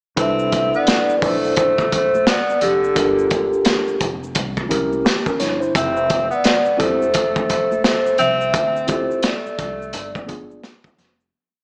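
A swung boom-bap beat at 86 BPM drives this short, cool jazz-hop piece in C major, with a crunchy, saturated breakbeat kit up front in a pumping small room, a woody pizzicato upright bass playing a syncopated line with muted ghost notes, and very quiet, close and dry congas and egg shaker. Over free, rootless comping and short fills from a mellow tine electric piano, a soft-mallet vibraphone rings out a motif-based melody with slow motor vibrato, while a breathy, distant tenor saxophone adds a whispered harmony line mostly in thirds. Rich chords such as Cmaj13, C7b9 and G7b9 color the single head, which begins at 0.2 seconds and fades out from 8.5 to 11.3 seconds, all through light reverb and a small speaker sound.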